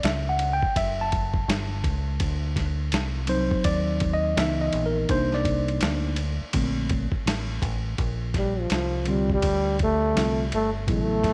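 Warm yet cool, this jazz-hop excerpt rides a swung hip hop groove where a worn, slightly out-of-tune tine electric piano takes the lead until 8.0 seconds over a round, punchy fingered bass and a gritty, compressed sampler-style drum kit with a thumpy kick, before a mellow trombone with light vibrato, scooped notes and tape echo steps up front at 8.4 seconds, all bathed in echo chamber reverb.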